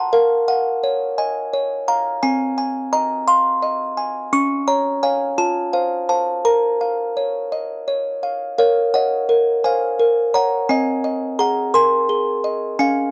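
A lone, tinkling music box, slightly out of tune and close-miked up front with light reverb in a dry 1970s-style studio sound, plays a fragile, eerie classical lullaby in a straight 6/8 that states its theme and then begins it again at 8.6 seconds before the cut from the longer piece ends at 13.1 seconds.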